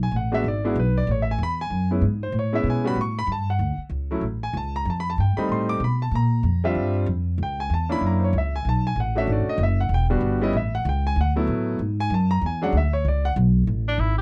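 A brisk swing at 190 BPM in 4/4 drives this playful jazz fragment in A major, with a woody pizzicato upright bass up front from the start and a clear concert grand piano with a deep bass register comping through rich extended chords such as Amaj9, Gmaj9#11 and F#7b13. The dry, close sound recalls a 1970s studio, and the piano falls silent at 13.3 seconds. A vintage-toned tenor saxophone, clear with vibrato and scooped notes, slips in only at 13.9 seconds as the bass plays on to the cut at 14.2 seconds.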